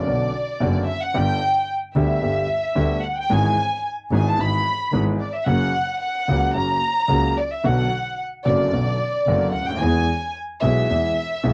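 A passionate, elegant tango excerpt in B minor at 111 BPM with a rubato feel opens with a soft-attacked, sul tasto chamber violin section taking the solo up front in an intimate, close voice with light vibrato, over a boxy concert grand piano with deep bass and long sustain and a dark, bowed double bass singing with vibrato and portamento, the violins and piano carrying a cassette-tape hue in a small booth-like home room as the chords move from Bmadd9 through G, E/G#, F#, Bm and E across 11.5 seconds.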